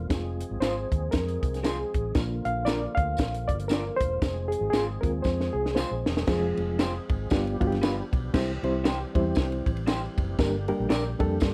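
Light reverb frames this short cut from a longer uptempo 1960s-style soul piece in F dorian, moving at 117 BPM in 4/4 with a swung eighth-note feel and a driving, passionate mood. A reedy, worn reed electric piano sits up front with a fast tremolo, slightly out of tune and heard through its built-in speakers, taking a solo from the start until 6.3 seconds over Fm and Bb. Beneath it, a percussive tonewheel organ holds sustained chords with light overdrive, chorus vibrato and a slow rotary speaker, while a dark, round, foam-muted electric bass anchors the low end. A compact cocktail drum kit plays up front with a punchy kick, high-tuned snare and dark cymbals, joined by a jingly tambourine in the background, and the drums play a fill from 5.3 seconds that leads into a new section. An electric guitar through a small old amp adds slightly broken-up, compressed stabs from 0.6 seconds, as the harmony shifts through G7 to C and Gm.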